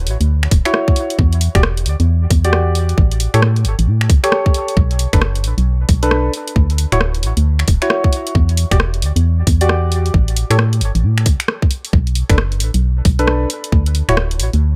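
A dry, echo-heavy mix opens this late-night, skippy excerpt of two-step UK garage at 134 BPM in B minor, swung at 62% on the sixteenths and cycling through Dmaj9, Em9, A7 and Bm7. An up-front, hollow FM bass with an organ-like, dark tone carries the low end from the start, joined by a produced garage kit of finger snaps, hi-hat and rim click and then a tight, layered electronic kick. Above them, a percussive organ stab built from sine, triangle and a noise layer decays through chorus and dub echo.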